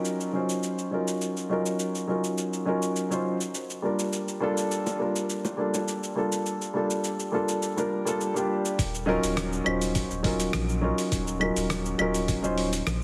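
Wistful and relaxed, this sunset chillout excerpt moves at 103 BPM in 4/4 over a dark, mellow grand piano accompaniment up front whose worn, intimate tone carries audible action noise and tape echo over Ebm9 and Gm9 chords. A dusty, sampler-style soul kit of cabasa, claves, hi-hat and rim click sounds gritty and overdriven, while low-tuned acoustic bongos sit in the background from 4.9 s to 7.9 s. At 8.8 s a deep sine sub bass and a knocking electronic kick arrive, and the mix is bathed in plate reverb and squeezed into a heavily compressed radio sound.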